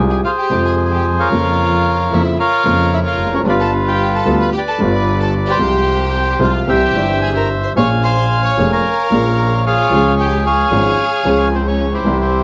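Tango with a passionate, tense mood, this short passage cut from a longer piece moves with a rubato feel in 4/4. A reedy, vintage-toned bandoneon carries the melody up front, its band-limited sound reaching as high as Db6. Beneath it, a dark upright piano gives mellow, woody accompaniment with short sustain, while a single bowed double bass holds the low end with a clear, focused tone and vibrato, set back at a distance. A lush, bowed violin section enters at 0.1 seconds with a smooth, even second line, quieter in the mix. Light reverb surrounds the ensemble as the harmony moves from Fmadd9 through G7 and Bbm7 before settling on Db.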